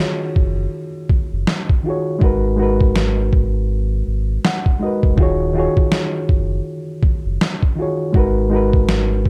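Nostalgic and reflective, this lo-fi hip hop excerpt at 81 BPM in Eb minor, swung on the 16ths, opens with a reedy, worn, slightly out-of-tune electric piano, lightly overdriven and softened by cassette tape and a low-pass filter, over Ebm11 and Abm9 chords; it is joined at 0.4 seconds by a deep sine sub bass and a gritty, pitched-down boom bap sampler kit with a thumpy kick and a medium-tuned snare, while the piano plays a fill from 4.1 to 5.2 seconds in a dark production with light reverb.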